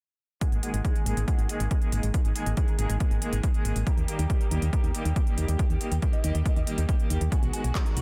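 A punchy, layered electronic kick sits up front in this driving, emotional uplifting trance excerpt at 139 BPM in G# minor, alongside a round, dark FM bass that pumps to the sidechain and a techno kit of handclaps and smooth hi-hats. Behind them, a clear, bowed studio string section holds sustained chords through G#sus2, D# and B6, pumping and carrying a filter sweep across the full passage. A huge, detuned supersaw melody with vibrato, delay and a low-pass filter hangs in the background of a dense, heavily limited, nearly dry mix.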